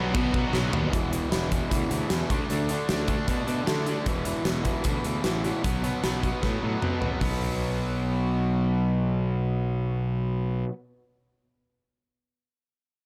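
A driving, menacing hard rock excerpt in B minor at 153 BPM opens with a double-tracked, overdriven stack guitar riff and a second distorted guitar that drops out at 0.9 seconds, over a growly fuzz bass and an up-front acoustic drum kit with a punchy kick and fat snare. The kit rings in a bright stone room and plays fills into the main riff, which moves through E5, D5 and B5 power chords, then again at 6.4 seconds. After the drums stop at 7.3 seconds, the stack guitar and bass carry a new section alone in a small-room ambience.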